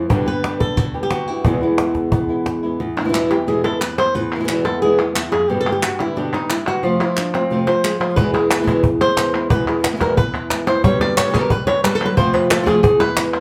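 A fingerpicked flamenco guitar with fresh strings leads up front, breaking into a nylon-string solo at 2.8 s in this passionate, intense excerpt, while a second flamenco guitar adds fingerpicked stabs with audible finger squeak over chords moving among G, E and F. A woody cajon, close and dry with faint snares and soft hands, drives the opening, falls away, and returns at 8.2 s, and crisp palmas hand claps from a small room join at 3.0 s. A wet studio reverb places the whole performance further back in the room.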